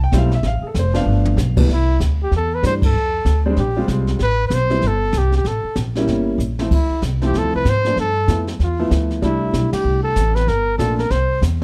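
A warm trumpet carries the melody up front in a jazz style with light vibrato, entering at 1.7 seconds and soloing across a middle register. This is sophisticated, swinging small-group jazz in the swing and bop tradition, moving at 191 BPM in 4/4 in C major, with a 62% swing on the eighth notes. Beneath it, a woody, dark pizzicato upright bass on steel strings sits prominently in the mix. A clear concert grand piano with deep bass and a smooth, vintage character supplies the accompaniment. A brush kit in a small room adds a high-tuned snare, a boomy kick, hi-hat, ride, crash and toms, with short drum fills and band accents at 2.8 and 9.7 seconds. The harmony moves from Dm and G7 to C6, passing through Am9, A7b9, Dm9 and G13 before settling on C, all within a dark production with light reverb in this passage cut from a longer piece.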